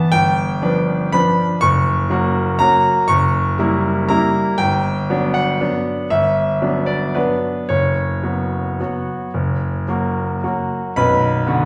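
A bright grand piano carries this short classical waltz alone, its brilliant, open tone ringing with long sustain and sitting up front even as a wet recital hall reverb places the listener further back in the room. The nostalgic, bittersweet mood unfolds in a rubato three-beat lilt, with the harmony moving from G7 at 0.1 seconds through F#7b9 and Gmaj7 before settling on Bm at 11.0 seconds. The piano spans from the low bass register up to high treble, and the passage is cut from a longer piece.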